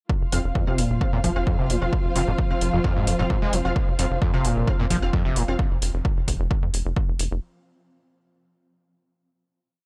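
A squelchy, distorted acid bass line with accents and slides, a resonant filter sweep, lush chorus, tape echo and sidechain pumping drives this intense peak-time techno piece at 131 BPM, set over a punchy four-on-the-floor kick, metallic programmed hats that pump, a tight rolling sixteenth-note sawtooth sequencer bass, dark woody strings with vibrato shifting slowly between chords, aggressive detuned rave stabs in dotted rhythm sitting in the background with chorus, reverb and echo, and a very quiet swarming granular drone with phaser from 1.4 to 5.6 seconds, all captured in a dry, gritty hardware recording.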